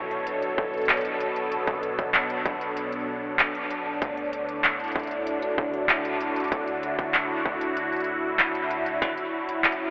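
Drenched in a huge, dreamy reverb with a long 7.9-second tail and filtered to a narrow telephone sound, this short IDM passage, cut from a longer piece, feels melancholic and cerebral. It moves at 96 BPM in a straight 4/4 in B minor. Up front, a swirling, airy analog pad of detuned sawtooth voices with a noise layer holds sustained chords through phaser and chorus, moving from Bm7 to Dmaj7 at 4.0 seconds and landing on F#7(no3) at 9.0 seconds. An industrial electronic kit of handclaps, crisp hi-hats and struck metal sits close and tape-colored, re-recorded in a small room and trailed by a diffuse ambient delay. A distorted electronic kick enters at 0.6 seconds with the same small-room grit. Far in the background, a deep, round sine sub bass with a fast attack sustains low notes, lightly thickened by tube saturation.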